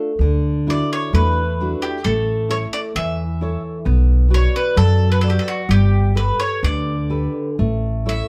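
A fado-style ballad, this short passage from a longer piece is passionate and mournful, moving with a loose, rubato feel in two. A nylon-string guitar opens at 0.0 seconds, fingerpicked as accompaniment with a full-bodied, deep classical tone. An upright bass joins at 0.2 seconds, played pizzicato on steel strings with a woody sound that sits up front and a little louder than the guitar. At 0.7 seconds a bowl-back mandolin takes the melody, picked on double strings with a warm, up-front voice. The harmony moves through Dadd9, A, Bm and Gadd9 before returning to A, and light reverb gives the trio a gentle sense of space.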